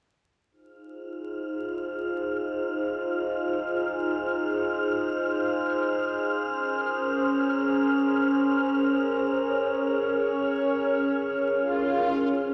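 A lush hall reverb and a vinyl crackle surround this short drum and bass excerpt, which sounds as if it were played on a big sound system in a bare room. In free time and F minor, the mood is nostalgic yet frenetic. A warbly, tape-like pad enters at 0.9 seconds with detuned sawtooth and triangle tones, holding sustained chords up front with chorus, phaser and a vintage 12-bit sampler grit. Its harmony moves from Fm7 to Bbm9 at 6.4 seconds. Behind it, a breathy, wind-like tuned noise texture of sine tone hovers high on F6 with a slow attack and long release. Near the close, an electronic swell sounds up front from 11.7 seconds.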